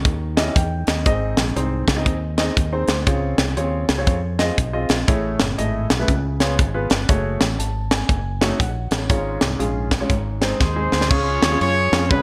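A bright, 1980s-style digital production with light reverb and studio ambience carries this soulful, jubilant uptempo gospel excerpt in a swung 4/4, built on rich chords such as Eb7b9, Dbmaj7 and Gbmadd9. An intimate grand piano with subtle chorus and audible action noise shares the front with a tight funk drum kit, whose high-tuned snare and gated reverb sit over a dark, round fingered electric bass. Together with a drum fill at 10.6 seconds, a mellow horn section with light vibrato and a smooth top enters up front with the melody, arriving just before a new section at 11.1 seconds.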